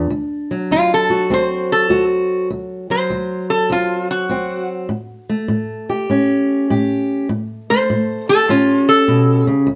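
A dark, boxy fingerpicked steel-string acoustic guitar opens this gritty, swaggering acoustic country blues at 100 BPM in a swung 4/4, moving from D7 to A7 beneath a lap resonator guitar that enters at 0.7 seconds. Played with fingerpicks and slide, the resonator carries the melody in a bright, metallic, nasal voice, and both guitars sit up front. The duo plays live together in one room with a moderate studio reverb, in a short excerpt cut from a longer piece.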